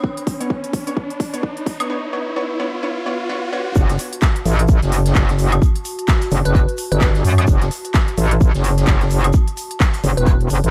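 Bass house at 129 BPM in F# minor, with a swung 16th-note feel that makes this short cut from a longer track sound bouncy and swaggering. It opens on a build-up over a Bmadd9 chord: a punchy, up-front electronic kick, crisp house handclaps, hi-hat and woodblock, an electronic riser, and a bold, detuned orchestra-hit-like synth stab with reverb and delay, all over a dark, warbling, lo-fi pad that pumps softly in the background. A drum fill runs through the first 1.9 seconds, and the stab drops out as the riser ends. At 3.8 seconds the drop lands on F# minor, led by a metallic, aggressive wobble bass, saturated and chorused, sitting up front and pumping with the kick. A gritty, rolled-off garage kit of hi-hat, shaker and medium-tuned snare joins far back in a small, pumping room, while a glassy, crystalline wavetable pluck briefly sounds a lone B4 at 6.5 and 10.2 seconds.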